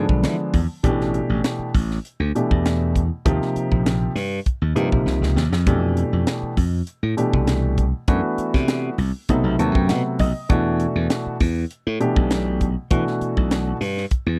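A worn baby grand piano with long sustain opens this funky, driving electric jazz fusion passage in E minor at 99 BPM, joined at once by a growly, punchy slap bass and a tight funk drum kit with a high-tuned snare and tight kick, all sitting up front. The piano voices rich jazz chords such as E7b9, Fmaj9 and Em9 over the bright, amped bass, while the drums add a short fill at 5.1 seconds and the piano plays its own fill at 9.3 seconds. The dry, close sound has a 1970s studio feel, and the piece breaks off as part of a longer work.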